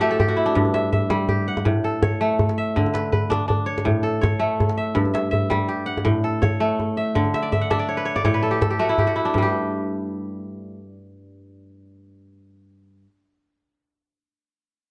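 Hypnotic and flowing, this short cut from a longer piece of West African traditional music moves in a steady, straight 12/8 feel built on string and hand-drum textures. The kora carries the music with bright, ringing arpeggios, fingerpicked and crisp, sitting up front across a range from low G2 up to F#5 and opening with a brief fill before the harmony settles in. Its chords cycle through colors such as Em9/G, A and Bmadd9/D before reaching a Dmaj13, with a second kora fill running from 7.3 to 9.3 seconds as the passage turns toward a short closing section. The djembe adds tight, cracking strikes from hard hands, joining almost at once and dropping out at 9.5 seconds so the kora plays alone until 13.1 seconds. A modest small-room reverb and a dark, warm production give the recording an intimate, close feel.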